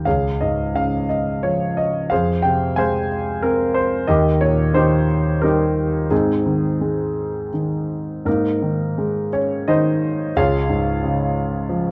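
Sunny and warm, this short classical piece for solo piano unfolds in a lyrical, rubato 3/4 at roughly 81-92 BPM in Ab major, tuned to A4 = 439 Hz and cut from a longer work. A concert grand sits intimate and up front, its natural tone reaching into deep bass with audible action noise, moving through Db, Fm, Eb and Ab before a repeat of the opening section at 8.3 seconds colors the harmony with Abadd9 and returns to Db. Light reverb surrounds the piano, and the recording has a worn, old cassette quality with a warbly pitch drift.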